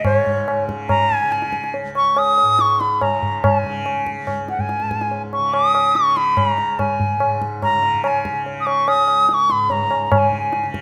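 From the first moment, a bright, reedy bansuri sings a meditative, longing melody in C# raga kafi, its pure tone carrying vibrato and tongued notes up front over a softly plucked, buzzing, shimmering tanpura drone and a close, high-tuned tabla with a short, dry ring, as this Hindustani classical fragment moves at 143 BPM in 4/4 within a moderate recital hall reverb.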